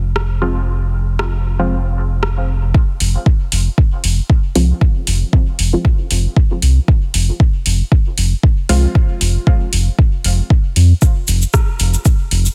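A dry, dense and heavily limited mix gives this dub techno excerpt a hazy, cavernous mood with a gently swung 16th-note feel. A round, dark analog bass built from sawtooth and sine tones sits up front from the start, its sustained notes pumping against the sidechain. A tape-warm deep house kit adds metallic hats, cabasa and rim clicks, with soft clipping on the snare. Muted, detuned chord stabs with a short filter pluck drift through chorus, phaser and dub echo, and they also pump with the sidechain. At 2.7 seconds a deep, layered electronic kick lands up front and a filter sweep begins on the stabs, which drop out at 8.9 seconds while the bass and drums carry on.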